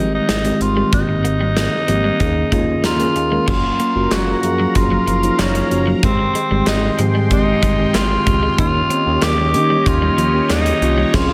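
Glossy and uplifting, this 1980s-style pop excerpt moves at 94 BPM in a straight 4/4 feel in Ab major, with chords running from Abmaj7 through Eb7sus4, Gbmaj7 and Abmaj7 to Eb7. A breathy, raspy tenor saxophone carries the melody up front in a clear pop style, over a mellow tine electric piano that plays a fill just before the second section begins at 3.5 seconds. Beneath them, a chorused synth bass with a saturated, plucky pulse-and-sawtooth character holds down the low end, while an electric guitar at the edge of break-up plays a picked, compressed riff very quietly in the background. The gated 80s drum kit enters at 0.3 seconds with a punchy kick, medium-tuned snare and bright cymbals in a big gated room. From 3.5 seconds an airy, evolving pad with detuned sawtooth tone and chorus adds sustained chords, joined from 4.1 seconds by crisp, very quiet group handclaps, before the band lands a closing accent near the end under light studio reverb.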